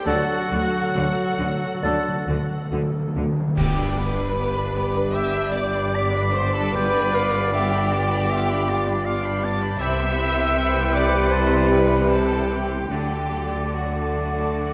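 Serene and warm, this slow, rubato excerpt of a romantic orchestral movement in G major moves at 65-81 BPM in 4/4 through D, G, G7, Cmaj7 and back to D. A lush, focused violin section carries the melody over an intense chamber violin line, a clear oboe with a soft attack and an airy, hollow flute, while smooth violas, mellow horn and trombone chords, distant trumpet stabs, and a rich bass of cellos and double basses fill out the texture. A mellow bassoon and roomy tuba sound only briefly at the start, round soft-mallet timpani fill until 3.6 seconds, bright cymbals and bass drum mark an accent at 3.6 seconds, and a wet scoring-stage reverb surrounds the orchestra.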